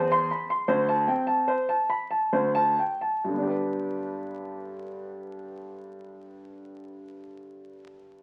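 Through the crackle of a very old 78 rpm record and a moderate stone-room reverb, a smooth, vintage grand piano sits up front and plays alone in this radiant, flowing baroque-style suite movement in G major and 3/4, tuned to A4 = 435 Hz, with a rubato pulse between 64 and 82 BPM that slows over the opening 3.2 seconds as C/E, D7sus4 and D5 chords settle onto G, in a brief cut from a longer piece.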